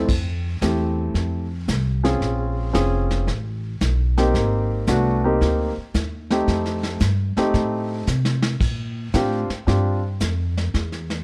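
This is small-group jazz in a swing and bop style, a sophisticated, swinging passage cut from a longer piece, moving at 113 BPM in 4/4 with swung eighths in F major. A grand piano with a warm tone and short sustain sits up front, comping through rich changes that start on Fmaj9 and pass through Bbm9, Asus2, Abmaj9 and F7 before landing on Bb69. The pizzicato upright bass is equally close and present, its steel strings giving a woody, rounded low end. Behind them, a vintage brush kit plays brushed snare, hi-hat, crash and a punchy kick, its dark, smooth sound carrying a rolled-off top and the feel of a small room. The drums take a short fill from 8.1 to 8.6 seconds, the piano drops out at 10.0 seconds, and bass and drums carry on to the cut at 11.2 seconds, all under a light reverb.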